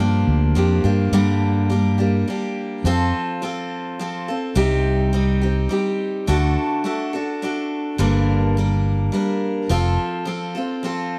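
A picked steel-string acoustic guitar and a fretless electric bass open together on a Gm7 chord in this intimate, haunting acoustic folk piece, cut from a longer performance. Set in G minor at 105 BPM in a straight 3/4, the guitar's accompaniment sounds bright and fresh-stringed, sitting up front, while the bass lends a dark, round, punchy presence with an amped electric edge. The harmony moves through Gm, F, Cm and D before returning to Gm and then F, giving the short passage a brooding, circular quality. The bass drops out at 10.0 seconds, leaving the guitar to carry on alone until 11.2 seconds. The dry, close recording has a 1970s studio character with a touch of small room reverb.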